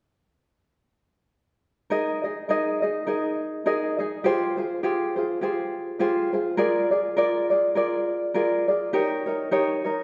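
A gently swung 4/4 pulse at 103 BPM carries this languid, relaxed Hawaiian fragment in Ab major, where a light, thumb-plucked acoustic tenor ukulele enters at 1.9 s and sits up front, plucking an easy accompaniment through Absus2, Fmadd9, Bb7 and Eb7, bathed in a lush recital-hall reverb that places the listener further back in the room.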